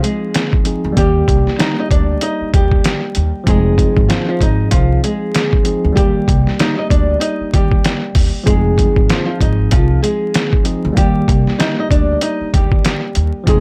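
Swung, muffled boom-bap drums with a thumpy kick and medium-tuned snare sit up front, compressed and pitched down like a sampler, driving this moody, tough hip-hop excerpt as a woody pizzicato upright bass joins at 0.8 seconds, a clean tine electric piano heard through its built-in speakers accompanies on Fm7 and Ebmaj7, and a fingerpicked flamenco guitar with audible finger squeak carries the melody through filtering and delay, set in a dry room under a layer of vinyl crackle.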